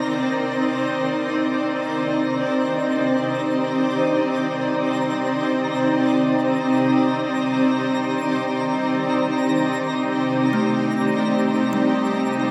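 A wet shimmer reverb with a long 6.8-second decay wraps this short ambient fragment, cut from a longer piece, in a reflective, melancholic haze. In free time and C dorian, a cloudy, detuned granular pad sits up front from the start, holding a blurred, full-bodied Cm9 chord with a slow attack and long release that keeps the sound gently evolving. In the background, a woody, hollow kalimba with a ringing thumbnail pluck plays arpeggios through a delay, fading in from 0.1 seconds. Above it, a twinkling granular texture adds a sparkling octave-up shimmer high in the register, also fading in over the same stretch. The result is a single unhurried section of suspended, drifting calm that never settles into a pulse.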